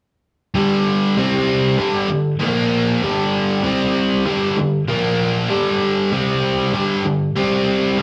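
Soaked in studio reverb and captured live in a single room, this brooding, driving rock excerpt in G minor moves at a straight 97 BPM in 4/4. A biting, dark, overdriven electric guitar, picked and double-tracked, sits up front and carries the whole piece from 0.5 seconds onward. It cycles through G5, C5 and Bb5 power chords between G2 and C4.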